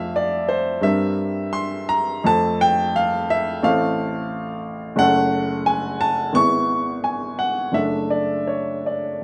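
Hopeful and warm, this short excerpt cut from a longer piece presents a romantic character piece for solo piano in F major. The pulse sits around 87 BPM in 2/4, but the beats are uneven and the rubato lets the phrases breathe freely. A single upright piano carries everything across the full 9.2 seconds, its tone woody, polished and up front, spanning a range from F#1 to C#6. The harmony begins at home on F, moving through C7/G and F/A before veering unexpectedly to F#m at 5.0 seconds, then E/G# and D/F#, lending the close a sense of open-ended searching. Light reverb places the instrument in a modest, intimate space, keeping the sound present and clear.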